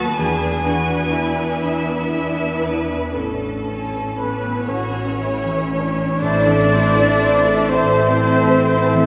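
A lilting 6/8 sways under a free, rubato pulse as this tender, serene classical passage unfolds, cut from a longer piece. Lush violins carry the melody with smooth vibrato while a second violin line, more distant and expressive, moves beneath them. Violas with gentle portamento sit in the background, and a ringing, thumb-plucked concert harp spreads arpeggios across its range as close, even cellos and double basses anchor the bass. At 4.2 seconds an airy, very quiet flute and a warm oboe join on a second line, while a mellow trumpet section adds hushed stabs. At 6.2 seconds the harmony turns to a minor chord: a roomy clarinet, a bassoon and a bright trombone section enter, the trombones and a very quiet French horn section holding sustained chords. A deep church reverb bathes the whole ensemble in a glowing, spacious halo.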